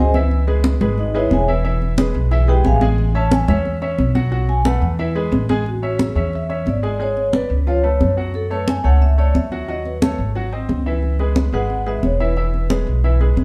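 A mellow, ringing vibraphone with medium motor vibrato leads this danceable, sophisticated Afro-Cuban jazz passage, taking a solo over the first 5.7 seconds before carrying the melody on until 12.8 seconds. Beneath it, a clear baby grand piano with short sustain comps through jazzy changes such as C#m7, Amaj9 and G#7. A woody pizzicato upright bass sits up front while bright, damped, high-tuned congas played with soft hands add a close, dry pulse. The band sounds as if playing live together in one room, set in a lush large-studio reverb, and the clip is cut from a longer piece.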